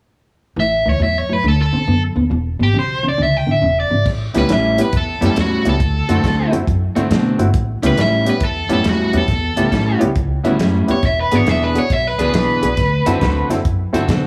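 Electric blues shuffle with a swaggering, rollicking swing, cut from a longer piece and set in a small room with light reverb. An up-front, overdriven lead guitar carries the melody with slapback echo from 0.6 seconds, over a twangy, slightly broken-up rhythm guitar riff and woody pizzicato upright bass, moving through A7, D7 and E7 changes. At 4.1 seconds a dry, dark soul drum kit with a tight kick and medium-tuned snare comes in, and a polished grand piano adds accompaniment just after; the lead guitar stops at 13.5 seconds.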